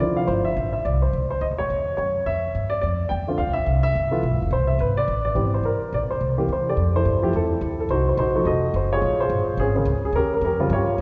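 From the first beat, an up-front, woody upright piano carries the melody over a thumpy, plucked upright bass in this playful, relaxed swinging jazz excerpt at a brisk 213 BPM in C major, moving through rich chords such as Dm9, G13, Fmaj9 and F7b9 as a long church reverb surrounds the duo before it cuts off at 11.0 seconds.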